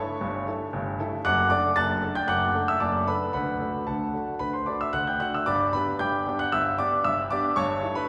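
Cheerful and playful, this short excerpt of a classical-period piano sonatina in straight 4/4 features a solo concert grand piano with an intimate, polished tone, deep bass, long sustain and audible action noise, spanning F#1 to A6 through a progression of A7/G, D/F#, D and G before returning to A7/G, all bathed in a wet church reverb that places the listener further back in the room.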